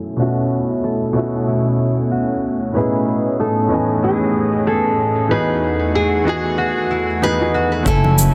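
This sunset chillout excerpt drifts along at 94 BPM in 4/4 with a gentle swing on the sixteenths, carrying a wistful, relaxed mood over a B9sus4, Amaj9#11 and Emaj9 progression. A lush, thick unison pad of detuned sawtooth and square waves holds sustained, bright chords with a slow attack and long release, softened by chorus, while a ringing concert harp plays arpeggios in the background through delay and a low-pass filter; both pad and harp move under a filter sweep. A polished, present baby grand piano sits up front in the accompaniment with its own delay, and an overdriven, layered cabasa drives the groove. At 2.8 seconds a fingerpicked classical nylon-string guitar takes the melody up front, touched with delay. Only at 7.9 seconds does a woody, thumpy pizzicato upright bass arrive beside a knocking electronic kick, followed by faint, distant congas in a large room. The whole is set in a moderate plate reverb and finished with a dense, heavily limited modern master.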